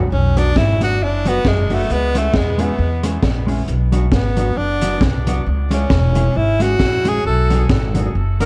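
A dark, lightly reverberant production frames this energetic, mischievous ska excerpt with a swung feel, as a breathy, whispered tenor saxophone solo with light vibrato and dub echo sits up front over a woody, growly pizzicato upright bass, a clean, compressed mellow electric guitar carrying its own dub echo, and a gritty, saturated breakbeat kit with a punchy kick and high-tuned snare that enters at 0.4 seconds.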